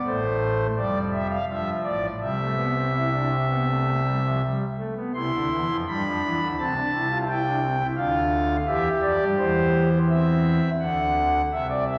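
A straight, steady pulse in four underpins this elegant, lively fragment of a baroque-style three-part fugue, cut from a longer piece. A single pipe organ on foundation stops carries every line alone, sitting up front with a thick, romantic voicing that spans from deep pedal notes high into the treble. The harmony moves through major and minor chords, settling on a bright tonic before a contrasting middle passage begins near 5.1 seconds. The opening material returns at 10.8 seconds on a dominant-seventh colour, leaving the music poised to continue. A generous, wet scoring-stage reverb with a 1.8-second tail surrounds the organ, giving its tone a full, enveloping bloom.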